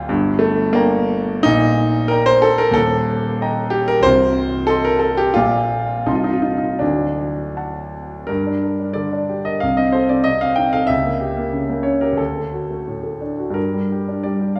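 A deep-bassed, smooth concert grand sits up front in this stormy, bittersweet romantic character piece for solo piano in a rubato 2/4, cut from a longer work, moving from an opening section into a second one at 8.3 seconds, with diminished chords building tension toward a D chord before resolving to G minor at 13.6 seconds, all set in a wet concert hall reverb.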